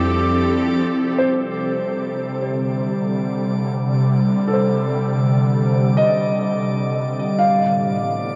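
Ambient in free time, this luminous, serene excerpt opens with a breathy alto flute and a round analog bass that both fall away within the first second, leaving an evolving, detuned wavetable pad up front with ensemble chorus and a filter sweep, a soft felt-muted upright piano playing delayed arpeggios, a very quiet organ-like drone entering at 0.1 seconds, and a glassy, drifting harmonics texture fading in from 0.9 seconds, all bathed in huge reverb and the warbling pitch drift of worn cassette tape as the chords move from Fmaj7 through Cmadd9 to Asus2.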